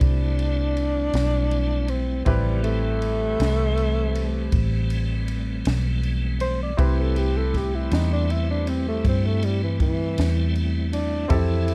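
A dark, dry production with little reverb frames this smoky, brooding slow blues excerpt in A minor, moving in 12/8 at 53 BPM over a single Am7 chord. A breathy tenor saxophone plays a solo throughout, up front and whispered, with subtone, vibrato and scooped notes, while a bright upright piano with woody action noise and long sustain accompanies. A tonewheel organ holds lightly overdriven chords with key click, chorus vibrato and a slow rotary speaker, a foam-muted fingered electric bass sits round and prominent, and a compact cocktail kit adds a punchy kick, high-tuned snare and dark ride cymbal.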